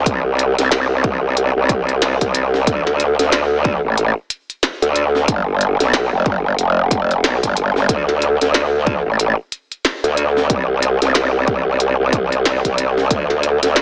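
A growling, aggressive bass drives this swaggering, gritty glitch hop cut, opening at 0.0 s with a wobbling sine tone shaped by a formant filter, its fast attack giving way to sustained, saturated notes between F1 and D2. Chorus and overdrive thicken the compressed bass, which sits up front in the mix. From 0.1 s a layered, punchy electronic kick anchors the groove until 13.3 s, while a glitchy drum kit with a tiny snare and clicky hi-hats sits prominently alongside it. Both drum parts were re-recorded in a small room. The track moves at 92 BPM in 4/4 with a 60% swing on the sixteenths, in D dorian. The sound is dry and close, with a small-speaker quality, and this short section is lifted from a longer piece.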